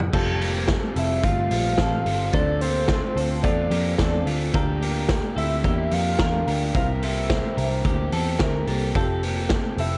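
A warbling, nostalgic synth lead carries the melody from 1.0 s over a youthful, nostalgic jangly indie pop groove at 109 BPM in F major, with a gritty, up-front vintage drum kit with dark cymbals, a round foam-muted picked bass, twangy bright twelve-string electric guitar arpeggios with subtle chorus and slapback echo, an overdriven garage guitar with spring reverb sitting in the background, a metallic ringing vibraphone as a second line, and a very quiet, woody, slightly detuned upright piano, all moving through Fadd9, Dm7 and C7 in a dark production with light reverb.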